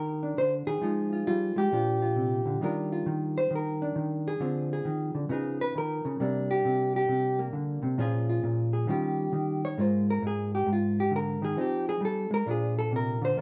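Playful and swinging, this short fragment of a longer solo jazz piece features a single hollow-body electric guitar carrying everything on its own. The eighth notes have a relaxed swing, and the guitar ranges from Ab2 up to Db5. Its tone is dark and clean, fingered rather than picked, with a compressed evenness that keeps it sitting up front. The opening bars move through Ebsus2, Fm7 and Bbadd9 before the solo proper begins at 2.6 seconds on an Ebmaj9. From there the harmony turns colorful, passing through Dm7b5, Db13, Csus2 and Eb9 before settling back on Fm7 and Bbadd9 by 13.4 seconds. A moderate studio reverb gives the instrument a modest sense of room.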